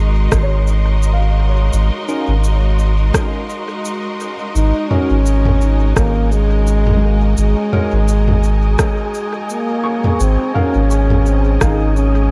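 A punchy, layered electronic kick and a tape-warm electronic kit of cabasa, rim click and toms with dub echo set a lightly swung 85 BPM groove in 4/4, under a deep, round sub bass with tube saturation holding Ab1 up front, in this spacious, peaceful ambient dub passage in Ab mixolydian resting on an Ab7sus4 chord. Lush, bowed strings sustain chords while a felt-muted upright piano, intimate with audible action noise, arpeggiates through dub echo in the background beside an airy, wind-like tuned noise layer. Very quiet, barky tine electric piano stabs arrive at 2.1 seconds, and a dark solo trombone with light vibrato carries the melody up front from 4.6 seconds, its phrases trailing dub echo in a digital ambience.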